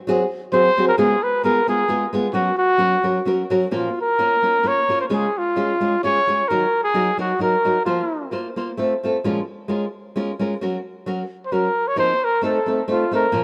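A mellow trumpet carries the melody up front, its smooth top and light vibrato giving the line a classical, singing poise as it enters at 0.5 seconds. It rests from 8.3 seconds and returns at 11.5 seconds to carry on to the end of this fragment of a longer piece. Beneath it, a fingerpicked nylon-string guitar plays accompaniment throughout, its fresh strings sounding bright in a classical manner, also placed close to the listener. This Mexican folk piece moves in a lilting triple metre with a faint swing, its harmony opening on dominant-seventh colors before turning toward minor chords with a brief diminished touch near the close. A moderate plate reverb lends the pair a gentle halo, suiting the romantic, proud mood.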